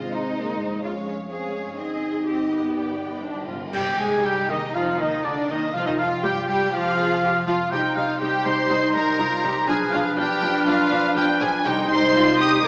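Classical orchestral music in a dramatic, fast romantic style, this restless and urgent passage in C minor moves at 122 BPM in 4/4 with a rubato feel, cut from a longer piece. Lush bowed violins carry an expressive, distant melody over a smooth second violin line, while rich violas, cellos and woody double basses fill the background beneath dark, sustained French horn chords and mellow, ringing harp arpeggios. Close, dry timpani enter at 2.8 seconds with a fill that leads into a full band accent at 3.7 seconds, where bright clash cymbals and concert bass drum strike and the woodwinds and trumpet join. From there a pure, very quiet flute group, a bright clarinet and a light-vibrato oboe add second lines, and a soft-attack trumpet plays stabs as the harmony turns through C minor, G7 and a diminished chord. The sound is wet with scoring-stage reverb yet has a small-speaker quality.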